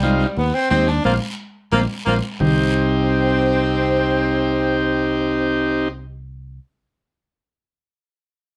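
A fiery, passionate cumbia clip in C minor at a brisk 177 BPM, moving from Cm to Bbsus2 and back, with a buzzy, overdriven vintage combo organ up front beside a warm fingered electric bass. A jazz-style saxophone section carries the melody with vibrato and a soft attack, while thick-skinned congas sit in the background with a raspy guiro until 2.5 seconds, and a band accent lands at 1.0 seconds. The recording has a worn, warbling cassette-tape quality with pitch drift and moderate studio reverb.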